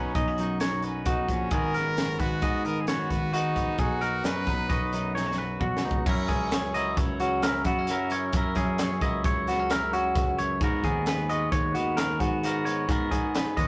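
A brilliant trumpet opens this playful, wistful math rock and midwest emo cut, its solo line carrying light vibrato and scooped notes in a pop style before it drops out at 5.2 seconds. Beneath it, two clean, twangy electric guitars share the work, one laying down accompaniment while the other picks bright arpeggios high up, moving through chords like F#6, G#m9 and Bmaj7. A growly, punchy picked electric bass holds the low end, and a crisp fusion drum kit sits up front with a high-tuned snare, punchy kick, hi-hat and crash cymbals in a small, pumping room. The tune moves at 132 BPM in a straight 5/4, and a drum fill from 5.2 to 6.1 seconds leads into a second section built around F#9 and G#m9. The rough rehearsal-room sound has warm saturation and light reverb, and the recording is cut from a longer piece.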